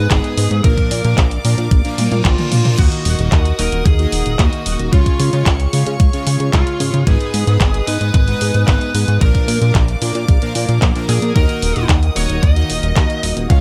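Heard within a digital ambience, this danceable, bittersweet italo disco passage in Eb minor at 112 BPM is driven by a thumpy, up-front electronic kick and a layered house kit with bright hi-hats, handclaps, crash and toms, beneath a glossy, dark chorused synth bass, fat brassy analog synth stabs, floating sul tasto symphonic strings holding sustained chords, and a compressed fuzz lead guitar carrying the melody through tape echo, while an electronic reverse cymbal from 1.9 seconds accompanies a drum fill that runs from 2.0 to 2.8 seconds.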